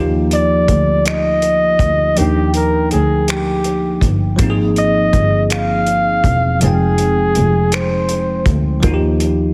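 A bell-like tine electric piano with lush chorus and a dark, bowed double bass sliding with vibrato open this tender, sensual slow R&B excerpt in 6/8 at 54 BPM in Eb major, joined at 0.3 seconds by a mellow, softly attacked flugelhorn melody in a jazz style and a cloth-damped, thuddy drum kit of finger snaps, hi-hat and tight, gritty kick, all moving through Ebmaj9, Ab69 and Fm9 chords with light reverb and a heavily compressed radio sound.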